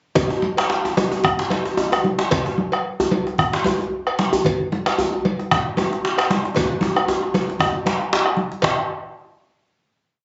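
A djembe with buzzing metal rattles leads this short, driving West African drum ensemble piece, its hard-handed phrases sitting up front yet heard at a distance in a large room. Beneath it, a second djembe, also fitted with rattles, plays an evenly spread pattern in the background with a close, dry sound. Thick-skinned congas, played with soft hands, add a damped, compressed and saturated pulse, while a round, band-limited bombo anchors the low end and a metallic cowbell carries the bell pattern. The feel is powerful, with a lightly swung groove in four that gradually speeds up, building through a drum fill from 6.6 seconds into a final hit at 8.6 seconds. Captured on a phone in the room with a light club reverb, the sound has a muffled, dark top end.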